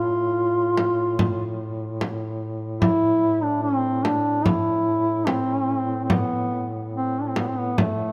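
A mellow duduk carries a solemn, mournful Caucasian lament in A minor, its vibrato and scooped notes given a tape echo and a distant, roomy quality, while a dark, smooth-topped second duduk holds a low drone beneath it. At 0.8 seconds a frame drum joins up front, its hard hands sounding compressed and saturated against the loose, rubato feel at about 73 BPM. Close, detailed microphones and light reverb frame this short folk-style fragment cut from a longer piece.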